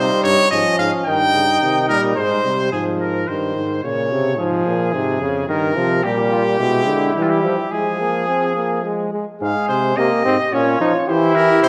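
Classical brass canzona in an imitative style, moving in a steady triple metre with a contemplative yet driving character, cut from a longer piece and heard in a reverberant recital hall. A bright, up-front trumpet carries the melody with light vibrato, while a mellow flugelhorn adds a second line that drops out at 2.7 seconds and returns at 6.0 seconds, as it settles into a minor key. Beneath them a warm trombone supplies the accompaniment with vibrato and a soft-attacked, distant bass trombone anchors the low end, with the harmony passing through colourful chords such as E7#9/B before closing on C/E.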